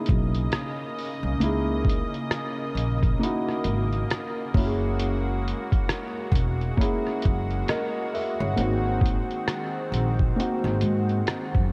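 A hazy, swung 4/4 groove from a muffled, pitched-down sampler-style drum kit with a thumpy kick, hi-hat and rim click sits up front beside a woody pizzicato upright bass, while a soft, felt-muted upright piano with audible action noise and a thick, airy, detuned unison pad with chorus move through C#m69, F#9 and G#7, all soaked in a lush hall reverb and cassette-tape haze that gives this lo-fi hip hop passage, cut from a longer piece, its dreamy, melancholic mood.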